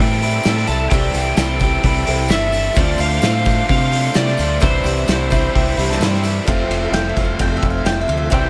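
A straight 4/4 groove drives this nostalgic folk rock and heartland rock excerpt at a lively pace, led by a loose, up-front drum kit with a punchy kick, dark cymbals and a pumping room sound, a faint jingly tambourine, and a round, deep fingered electric bass sitting just as close. Over this, an overdriven slide guitar carries the melody with a bright, cutting edge until about 6.0 seconds, while a double-tracked, scooped overdriven electric guitar plays a low riff beneath it. A boxy acoustic guitar picks swing-style accompaniment in the background, finger squeaks audible, and a reedy tonewheel organ holds very quiet sustained chords through a slow rotary speaker with key click. A very quiet, clear grand piano with short sustain adds a fill from 5.1 seconds, and the harmony moves from C6 through Dm7 and Cadd9 before settling on F. At 6.9 seconds a picked bowl-back mandolin steps in with a sparkling solo line, its doubled strings trailed by slapback echo, all set in light small-room ambience.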